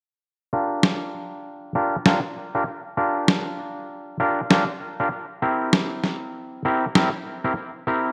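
A playful, swaggering glitch hop excerpt at 98 BPM in 4/4, swung on the sixteenths and set in G minor pentatonic with a tuning slightly below standard. An overdriven clav plays stabs from 0.5 s to 8.1 s, its stringy, percussive tone coming through a combo amp with a low-pass filter sweeping across it and a digital delay trailing behind. An up-front electronic snare drum enters at 0.8 s and runs until 7.1 s, sounding pitched down, compressed and gritty, with a tape-warm character from being re-recorded in a small room. The harmony rests on Gm7 before moving to C7 at 5.1 s. A moderate, lush hall reverb and bright 1980s-style digital production frame the short passage, which is cut from a longer piece.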